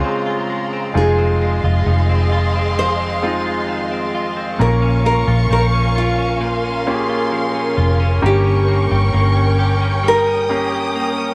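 A dark, round, foam-muted electric bass sits up front from 0.9 s in this heartbroken, longing F minor pop ballad at 66 BPM, cut from a longer piece, while a bright, fingerpicked nylon-string guitar with fresh strings carries a classical melody from 1.0 s over an intimate concert grand piano with audible action noise and long sustain, a clean, compressed direct-recorded electric guitar picking arpeggios, and a lush, distant bowed string section holding sustained chords with expressive vibrato, set in light small-room reverb with vinyl crackle.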